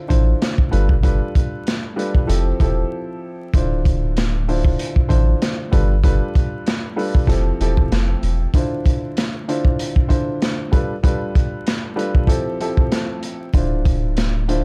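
Boom-bap hip-hop at 96 BPM in D dorian, this dark, tough clip swings lightly over a Dm7, G7 and Fmaj7 cycle, with a brief break at 2.9 seconds. A crunchy, saturated, gritty breakbeat kit with a tight kick and medium-tuned snare sits up front beside a round, mellow dub sub bass that drops out at 8.5 seconds and returns at 13.5. Behind them, a woody, intimate upright piano with audible action noise comps through cassette-tape coloring, filtering and plate reverb, all wrapped in a dark production with vinyl crackle.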